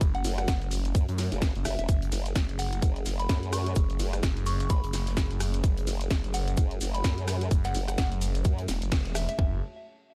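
Bouncy and swaggering, this bass house drop swings its sixteenths as a tight, up-front electronic kick and toms drive beneath a cracking snare, hi-hat, ride, rim click and shaker. A very quiet acoustic brush kit adds a fat snare, hi-hat and shaker, while a swirling, thick phased detuned saw bass and a wobbling formant-sweep wobble bass pump and saturate together over a deep, moody analog pad in the background. A soft, pure synth bell melody rings through chorus and delay in digital ambience, and a band accent lands at 8.9 seconds.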